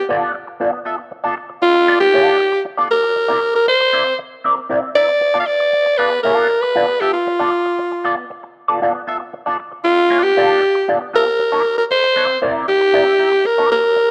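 A raspy, gritty alto saxophone leads this energetic funk excerpt, playing the melody up front from F4 to F5 with a forceful, punchy pop-style solo voice and a light vibrato. Beneath it, a clean, fingered semi-hollow electric guitar supplies accompaniment from 0.1 seconds, its hollow-body tone colored by wah and phaser. The groove sits at 117 BPM in a straight 4/4, centered on G mixolydian. The harmony moves from Bm7b5 to C9, settles on a rootless G9 at 5.2 seconds, and returns to C9 near the close. A moderate echo chamber reverb and a small room ambience surround the parts, and the dark, warm production keeps the top end below 10.9 kHz.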